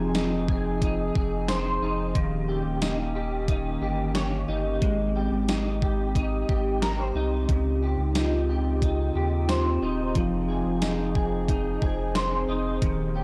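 A gritty, cassette-saturated hardware recording with light digital ambience carries this blissful, floating dream pop piece, cut from a longer work, at 90 BPM in a straight 4/4, moving through Fm7, Eb7, Abmaj7 and Dbmaj9#11 before returning to Fm7. Up front, a thumpy, overdriven 80s drum machine with a gated-reverb snare, hi-hat and tambourine sits over a round sine sub bass, while a slightly broken-up electric guitar picks compressed arpeggios through ensemble chorus and tape echo. Beneath them a dark, warbling, nostalgic tape-like pad sustains chorused chords, and from 2.2 seconds an airy, ringing vibraphone with fast motor vibrato and tape echo drifts in the background.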